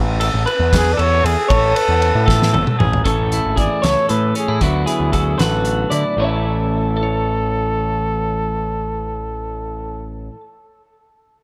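A growling, overdriven picked electric bass opens this wistful, intricate fragment of math rock and midwest emo, which moves at 77 BPM in a straight 6/8 in A major. Almost at once, an electric guitar through a small old amp joins with lo-fi, slightly broken-up arpeggios, bathed in spring reverb and tape echo. A loose indie drum kit enters alongside it, up front in a studio room with dark cymbals, a fat snare and a tight kick, and plays a fill before dropping out at 6.0 seconds. A breathy trumpet carries the melody: its dark, whispered, intimate pop-style line has vibrato, scooped notes and a soft attack, and is trailed by tape echo. From 3.1 seconds, a bright, clean twelve-string electric guitar adds picked accompaniment with spring reverb as the harmony moves from A5 and Aadd9 through Amaj7 and D69 back to A. The overall sound is dry.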